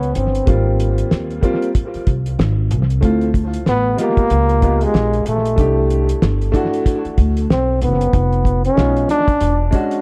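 An echo-heavy mix with light reverb frames this mellow, nocturnal jazz-hop excerpt at 94 BPM with a swung 16th feel, where a warm, up-front trombone solo with light vibrato, scooped notes and analog delay carries the melody over a woody, dark pizzicato upright bass, a cloth-damped, thuddy drum kit with a fat snare, tight kick, hi-hat and rolled-off top, and an intimate, boxy grand piano with audible action noise that enters at 0.5 seconds, voicing rich extended chords such as Abmaj13, Dm9 and Db7#11.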